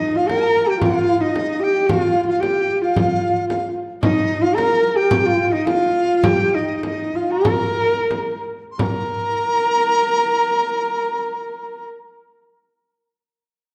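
Mongolian folk in a galloping, vast mood at 84-113 BPM in straight 4/4, cut from a longer piece, with a dark, husky horsehead fiddle carrying the bowed melody with vibrato and portamento up front, a mellow bamboo dizi with a buzzing membrane and crisp attack adding a pure second line above it, and a compressed, saturated frame drum struck with hard hands from 0.2 to 9.1 seconds, the tempo slowing from 4.0 to 8.8 seconds before a new section begins, all set in a recital hall reverb with a dark production.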